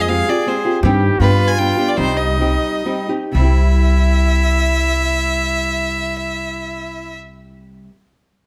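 A clear, bowed violin with smooth vibrato sings the melody up front from the opening moment of this dramatic, passionate mariachi fragment in 3/4, alongside a warm, classical-style trumpet with light vibrato on a second line, a small fingerpicked nylon-string guitar and a woody pizzicato upright bass that sits prominently forward, the tempo ranging from 116 to 163 BPM as it slows between 0.8 and 3.3 seconds over chords moving from Fmadd9 through Cm/G, G and Cm before a new section arrives on C at 3.3 seconds, all captured by close, detailed microphones in light reverb.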